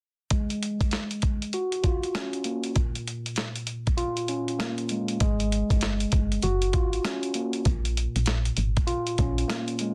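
A mellow tine electric piano and a gritty, sampler-style soul drum kit open this confident, soulful boom-bap hip-hop excerpt at 98 BPM with a 63% 16th-note swing, the piano moving through Gbmaj7 and Bbm7 under a filter sweep while the kick drops out from 4.0 to 5.2 seconds. At 5.2 seconds a woody, round FM bass enters with a dark, decaying tone beneath the thumpy kick and medium-tuned snare. The sound is dry and up front, with a dense, heavily limited modern master.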